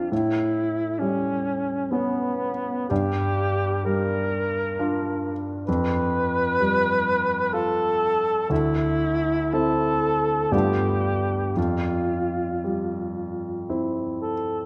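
A freely flowing rubato triple metre carries this dreamy, luminous impressionist classical duo, a fragment cut from a longer piece. A mellow alto saxophone sings the melody in a classical style with vibrato, while an intimate, clear grand piano accompanies throughout its 14.7 seconds, its action noise audible. The harmony drifts through colours such as A9, Gm7 and Dsus2 before settling on Fsus2 at 11.6 seconds, all bathed in the wet bloom of a scoring stage.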